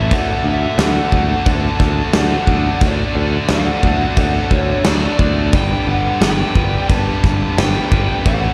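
A big arena sound with lush hall reverb frames this swaggering, sunny classic rock excerpt at 88 BPM in 4/4, where a dark fuzz lead guitar carries the melody over a cranked overdriven stack guitar and a distorted rhythm guitar playing riffs in the background, all three guitars carrying slapback echo, joined by a growly, punchy picked electric bass, an up-front acoustic drum kit with bright cymbals, a medium-tuned snare and a tight kick, and a very quiet, shouting tonewheel organ holding sustained chords through a fast rotary speaker as the harmony moves from D to G at 5.5 seconds.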